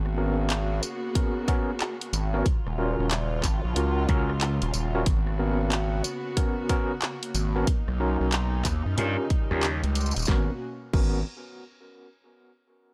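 Glitch hop with a funky, gritty swing, cut from a longer piece, where a saturated square-and-saw synth bass and a punchy, up-front electronic kick sit alongside a pop drum kit of fat snare, handclaps, tambourine and hats, while an overdriven tine electric piano through a combo amp plays tremolo stabs with tape echo over soft, sul tasto chamber strings carrying vintage 12-bit sampler coloring and sidechain pumping, all set in a digital ambience, and a growly slap bass breaks in briefly at 4.1 and 9.0 seconds.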